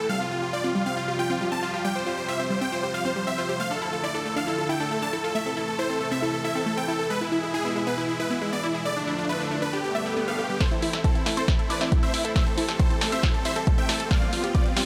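Uplifting trance at 137 BPM in A minor, emotional and bittersweet, where huge, bright supersaw chords carry the melody up front with sidechain pumping and dub echo over an airy, slow-attack supersaw pad and a filter-swept unison pluck arpeggio with cassette tape and digital delay, before a background swell and riser enters at 9.9 seconds and, from 10.6 seconds, a punchy, tape-warm kick, high-passed hi-hats and snare, and a second pluck line join for a build-up and drum fill moving from Am to Fsus2.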